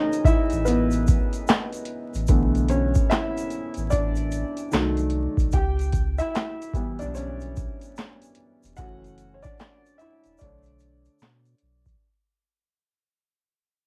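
A felt-muted upright piano, soft and intimate behind a low-pass filter, carries a hazy, melancholic lo-fi hip hop excerpt in B minor at 74 BPM with a 16th-note swing, moving from Bm11 through C#m7b5 and F#m7 to Bm9 over a booming, overdriven analog drum machine with a deep kick, crisp snare, handclaps and metallic hi-hats, a round sine sub bass entering at 0.5 seconds, and a grainy egg shaker in the background, all wrapped in light reverb and vinyl crackle on a cassette home recording as it fades out across its 12 seconds.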